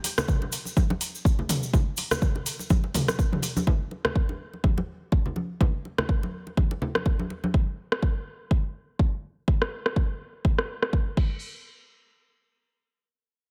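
A deep house drum kit of metallic hats, rim click, toms and crash cymbal, overdriven and filtered, is joined from 0.3 seconds by an overdriven electronic kick drum that sits up front with a deep, layered punch, in this hypnotic afro house excerpt at 124 BPM in 4/4 with a 56% swing on the sixteenths. Ringing, close and dry congas play until 7.5 seconds, while a grainy, bright cabasa sounds distant in a large room until 3.6 seconds, all set in a digital ambience. A filter sweep runs over the drums until 11.4 seconds, when the music moves into a new section.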